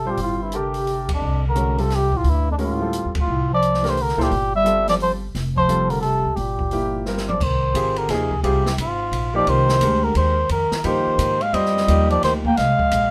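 In light reverb, this cool, spiritual modal jazz waltz at 174 BPM swings along as a veiled, breathy cup-muted trumpet carries the melody up front over a subtone bass clarinet second line, woody pizzicato upright bass, intimate grand piano with audible action noise, and a small-room drum kit with dark cymbals and a boomy kick, punctuated by early band accents before a drum fill leads into F dorian at 7.4 s.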